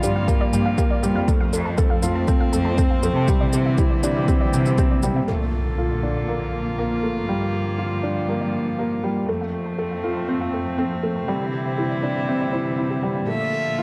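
A felt-muted upright piano riff, a sustained chords part on a nasal, gut-string quartet with sidechain pumping, a bowed cello-section bass and dusty, warbling pluck arpeggios in the background open this tender, luminous piano-and-strings electronica fragment at 120 BPM in Bb lydian, with a punchy, overdriven electronic kick and shaker in the opening seconds, an electronic impact at 5.3 seconds as the Gm7, F, Cadd9 progression lands on Bbmaj7 before cycling again, and an airy, up-front violin arriving on E5 at 13.3 seconds, all set in a dark production with a lush hall reverb.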